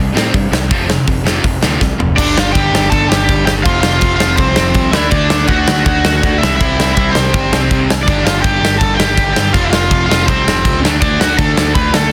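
Rebellious and rowdy, this punk rock excerpt drives in straight 4/4 on a bright distorted guitar riff set in the background alongside a dark, very quiet sludgy guitar, a growly picked bass and a big-room acoustic drum kit with a punchy kick up front, whose fill at 1.8 seconds leads into an overdriven cranked stack guitar melody pushed forward from 2.2 seconds, the whole mix dry, dense and heavily limited.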